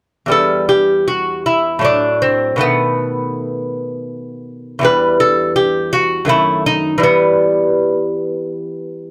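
A rubato triple metre at about 81 BPM carries this grave, introspective baroque-style dance for solo lute in E minor, heard as a short excerpt cut from a longer piece. The fingerpicked lute sits up front from 0.3 to 9.1 seconds, its paired gut strings, some doubled at the octave, giving a bright, delicate tone as the harmony moves from E minor through diminished chords and B7 before returning home. Close, detailed microphones and light reverb capture the instrument in fine detail.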